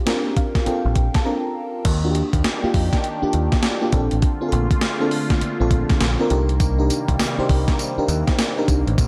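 A lush, dreamy FM electric piano with a soft chorused pad layer opens this punchy, confident new jack swing R&B fragment and plays a fill from 0.1 seconds into a brief break at 1.3 seconds. A gritty, overdriven 80s digital drum machine with a thumpy kick, gated-reverb snare, hi-hat, crash and tambourine drives the groove, joined by a round, dark picked electric bass up front. A bright, swirling phased analog pad with a slow attack then enters at 2.3 seconds to sustain the chords in a dry, close mix.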